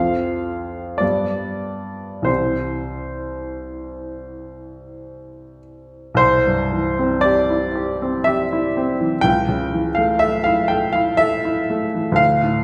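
This short excerpt opens in a wet recital hall, with a reverb that lingers for about 1.6 seconds and a sense of listening from further back in the room. It is a romantic classical nocturne for solo baby grand piano, dreamy and nostalgic in mood, set in C major in 3/4 time with a tuning of A4 = 436 Hz. The tempo drifts between 44 and 64 BPM, and the rubato feel lets the phrases breathe and stretch. The piano, warm and present up front, spans from C2 to G5 and plays alone throughout the 12.6 seconds. The harmony moves from F through G to C in the opening seconds, then settles there until an A/C# chord at 9.2 seconds lends a tender turn to the second section, which begins at 6.2 seconds.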